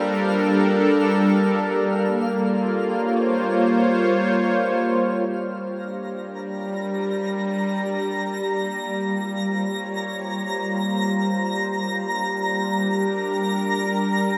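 A vast, echoing space surrounds this reflective ambient passage, its cathedral-like reverb letting every sound linger for seconds. At 76 BPM in G minor, a smooth, detuned analog pad sits up front, holding sustained chords that move between Gm7 and Bbm, its soft attack colored by chorus and tremolo. Beneath it, a bowed, string-like drone holds a single tense G3 with vibrato and a noise layer. High above, a twinkling granular texture scatters sparkling FM tones with an octave-up shimmer, blooming slowly and trailing off in long releases. From 5.3 seconds the pad fades in as the second section begins, and the spacious mood carries on until the cut at 14.4 seconds.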